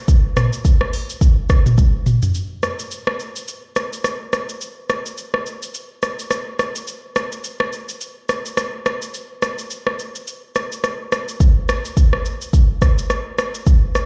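Heard through a big sound system in a bare room with large studio reverb, this sultry, mellow afrobeats excerpt in a swung 4/4 features an up-front electronic afro-pop drum kit of deep kick, metallic hi-hat, rim click, shaker and toms under light reverb, with a drum fill at 1.8 seconds leading into a break that runs from 2.3 to 11.4 seconds.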